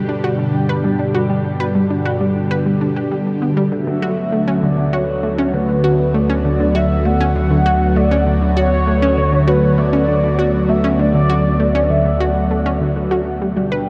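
Luminous and cosmic, this excerpt of sequencer-driven ambient space music in D major moves at 99 BPM in a straight 4/4, where a swirling, phased analog pad holds up-front sustained chords over a nasal, pulse-width-modulated analog drone that fades in, while a round, bright analog pluck plays a riff with tape echo and a mellow horn-like synth lead with vibrato and lush chorus carries the melody from 3.7 s, the chords moving from G to D6, all bathed in a huge, wet ambient reverb within a dark, warm production.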